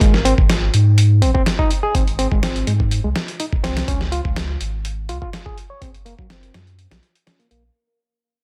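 A straight 124 BPM breakbeat groove in 4/4 drives this energetic, funky Ab mixolydian cut, where a gritty, thumpy sampler-style drum kit with hi-hat, kick and snare and a thick, saturated triangle sub bass sit up front under a barky, reedy electric piano riff, lightly overdriven through its built-in speakers with low-pass filter, digital delay and a filter sweep, moving over Ab, Db5 and Gb chords in a dense, heavily limited, dry mix with vinyl crackle that fades out across its 7.8 seconds.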